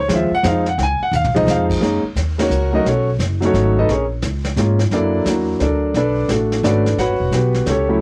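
The sound is homespun and taped: a home cassette recording with a faint mains hum and a light reverb. This is a relaxed, warm jazz piano trio clip cut from a longer piece, swinging in 3/4 at 174 BPM. The concert grand piano sits up front with a natural tone and deep low end, carrying the melody and opening on a solo passage before the harmony moves from Dbmaj9 through F#6, B9, A#m7 and F#7alt to Bm7 and A13. Beneath it, the pizzicato upright bass on steel strings has a woody, tube-saturated body. The brushed drum kit, heard in a small room with dark cymbals, a medium-tuned snare and a punchy kick, carries a rolled-off top and sits lower in the mix. It plays a fill at 1.1 seconds, and the trio lands a shared accent at 2.3 seconds, shortly after the second section begins at 1.8 seconds.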